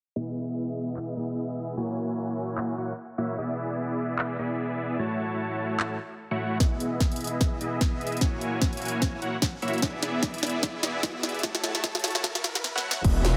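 Light reverb and a digital ambience frame this euphoric, playful future bass in swung half-time, led by a huge, airy supersaw riff with sidechain pumping, delay and a sweeping low-pass filter that cycles through Emaj7, F#7, E7 and A6. A trap kit with a sharp snare, bright hats, handclaps and crash, filtered and tape-warm, enters at 1.0 seconds, and a punchy, layered electronic kick arrives at 6.6 seconds as a build-up and drum fill begin. A very quiet riser, swell and sub drop lead into an impact at 13.0 seconds, where a thick, saturated, detuned saw bass with chorus lands.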